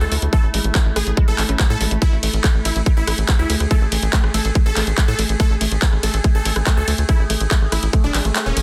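A punchy, detuned supersaw stab with phaser and digital delay opens this hypnotic, driving psychedelic trance excerpt at 142 BPM, alongside a tight, mellow sequencer bass sitting up front. From 0.1 s, a woody, warbling wave-folded pluck riff with chorus and delay sits in the background, beside a resonant drone of sustained chords with moving overtones; the drone, the pluck and the stab pump with sidechain. An overdriven drum kit with bright hats, handclaps, ride cymbal and rim click, plus an up-front overdriven kick entering at 0.3 s, drives the track within light reverb and a dense, heavily limited modern master.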